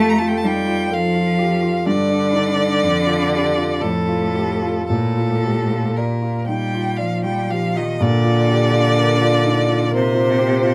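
Melancholic and elegiac, this brief passage cut from a longer piece is a slow romantic movement for piano trio in triple metre, its pulse stretched and relaxed with rubato. A single bowed violin carries the melody, its rich, focused tone shaded with vibrato and placed up front despite a slightly distant quality. Beneath it, one bowed cello sings a second line in its lower register, equally rich and touched with vibrato. The baby grand piano supplies the accompaniment with a dark, mellow, vintage character and long, smooth sustain. All three play together throughout, and the harmony settles onto a home chord at 4.9 seconds before the opening material returns at 8.0 seconds. Close, detailed microphones and a light reverb keep the sound clear.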